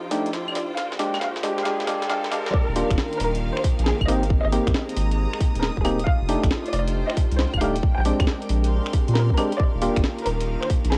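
Bouncy and soulful, this swung two-step UK garage excerpt opens on a 2.5-second build-up with a drum fill, a background riser and a filter sweep on a detuned analog pad. Gritty, pitched-up sampler-style claves, snaps, hats and snare, hollow percussive organ stabs with chorus and tape grit, and a dark, expressive violin melody with vibrato and portamento, floating over lush, intense strings and sidechain-pumped pad chords, are already sounding. It then drops into a tight, up-front electronic kick, with a round, deep dub sub bass entering at 2.7 seconds, all wrapped in light reverb and the high-passed character of a home cassette recording.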